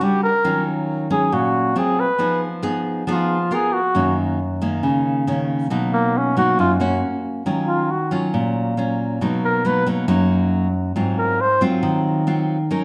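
A jazz-styled flugelhorn carries the melody up front, its smooth top shaded with vibrato and scooped notes as it solos from the start until 11.6 seconds. This is a wistful, smooth bossa nova in Eb minor at 137 BPM in a straight 4/4, cut from a longer piece. A fingerpicked nylon-string guitar sits equally close in a classical manner, its fresh strings giving a warm acoustic tone with the occasional finger squeak, and it rings on alone to 12.8 seconds. The harmony moves through lush colours such as Ebm9, Ab6, Fm7b5 and Bmaj7, and the same passage comes round again at 7.5 seconds. A moderate, large studio reverb and a dark, warm production give the pair a soft, roomy glow.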